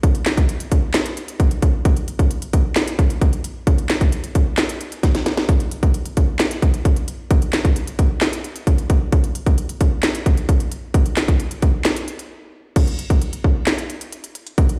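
Hip hop drum excerpt at 132 BPM in 4/4 with a half-time feel, carrying a dreamy yet triumphant mood. A trap drum kit plays throughout, its electronic, produced sound placed up front, with a hard-clipped kick, sharp snare, crisp hi-hats, handclaps and crash cymbal. A drum fill lands at 5.0 seconds and a break at 12.3 seconds before a new section opens at 12.8 seconds, all heard as if played on a big sound system in a bare room with stone-room reverb.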